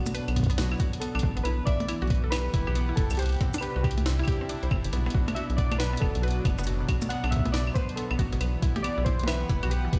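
Heard through a big sound system in a bare room with a large studio reverb, this cerebral, glitchy IDM excerpt moves at 138 BPM in B phrygian with a swung 16th-note feel, its chords shifting from Bm7 through Em9/B and Cmaj7 to Bm. Warbling, nostalgic lo-fi synth keys carry the melody over a smooth, detuned analog pad with chorus, while a woody, bright mallet-like FM pluck spins arpeggios through chorus and digital delay. Underneath, a pitched-up, gritty jungle sampler-style kit of claves, hi-hat, shaker, snare and toms pairs with a soft, overdriven electronic kick arriving at 0.4 seconds, and a rubbery, hollow square bass sits dark and up front with tube saturation from 0.3 seconds.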